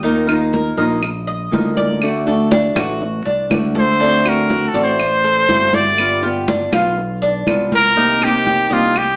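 A bright, punchy trumpet carries the melody from 3.8 seconds, sitting up front with a pop-style vibrato as the solo voice in this warm, danceable Cuban son and guajira excerpt at 121 BPM in straight 4/4. Beneath it, a fingerpicked flamenco guitar with fresh strings and audible finger squeak provides accompaniment, while a Cuban tres adds picked arpeggios whose doubled strings, some in octaves, give a metallic shimmer. A modern fingered electric bass holds the low end with a direct, punchy tone, and ringing, medium-tuned congas sound close and dry. Woody claves join at 0.3 seconds with a small-room character. The harmony moves from Ebsus2 through D, D7 and G7 to Cm7, and the whole mix is set in a wet studio reverb, heard from further back with a small-speaker quality.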